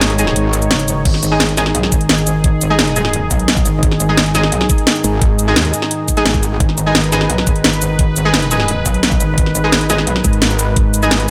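Futuristic and mechanical, this excerpt of dark technical drum and bass runs at 173 BPM in G# minor, built on a layered electronic kit with a cracking snare, metallic hats, crash and shaker sitting up front, plus a knocking, tape-warm kick that enters at 1.1 seconds after a brief dropout. Two aggressive, distorted FM wobble basses share the low end, one overdriven and holding from 0.7 to 10.2 seconds, the other returning at 5.0 and 10.2 seconds. Above them, an airy, detuned sawtooth pad pumps against the sidechain under bold, punchy orchestra-hit-like stabs trailing dub echo, all set in a light digital ambience.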